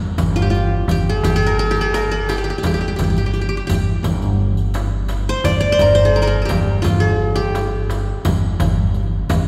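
The qanun leads this hypnotic, longing Arabic maqam ensemble piece in G maqam bayati. It sits up front with a bright, fingerpicked tone from its triple strings and enters at 0.4 seconds, playing melody between F4 and D5. The woody pizzicato upright bass on steel strings is also up front, holding the low end around G1 from the very start. The percussion joins at 0.2 seconds, moving at 86 BPM in a straight 4/4. A soft-handed frame drum with a warm sound sits in the background, a close, dry riq with dark jingles is played with soft hands, and a very quiet, crisp metal-shell darbuka sounds small, high and distant, as if in a large room. A long church reverb of about 3.1 seconds gives the whole ensemble a spacious, resonant hall sound in this short cut from a longer piece.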